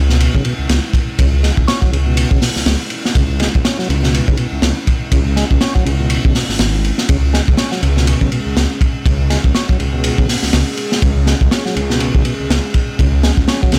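Gritty and swaggering, this breakbeat cut from a longer piece rolls at 122 BPM with a 16th-note swing, sitting on C# minor throughout its 13.8 seconds in a small room. A crunchy, saturated breakbeat kit sits up front with a tight kick, medium-tuned snare, dark cymbals and a rolled-off top, while a deep, rumbling detuned saw bass beats beneath it. In the background, a percussive tonewheel organ with key click plays a riff through a slow rotary speaker and tape echo, and a moody analog pad holds sustained chords through chorus, phaser and sidechain pumping from 0.5 seconds.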